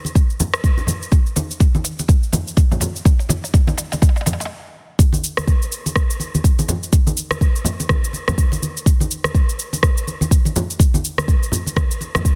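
A deep, layered electronic kick sits up front in this earthy, driving house cut from a longer piece, moving at 124 BPM in 4/4 with a 59% swing on the sixteenths. Close, low-tuned acoustic congas with a thick-skinned tone share the foreground, while a produced afro-pop kit adds cabasa, rim clicks, filtered toms and a soft-clipped snare. A drum fill builds for the first 4.5 seconds, the groove stops briefly, and at 5.0 seconds the drop lands, all set in digital ambience under a dense, heavily limited modern master.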